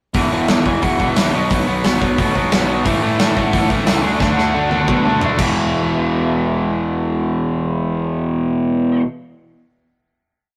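A crunchy, bright overdriven guitar leads this rebellious, upbeat punk rock piece at 178 BPM in E mixolydian, driving eighth-note power chords through E5, B5, A, D and E alongside a very quiet distorted twin and a fuzzy, overdriven picked bass. Up front, a big-room acoustic drum kit with a tight kick and medium-tuned snare pushes a fast punk groove, plays a fill at 4.2 seconds and stops at 5.5 seconds before the final hit, while a double-tracked barre-chord guitar joins in the background at 2.8 seconds and a lo-fi lead from a small cranked amp plays call-like motif phrases. The rough rehearsal-room recording carries light reverb and warm saturation.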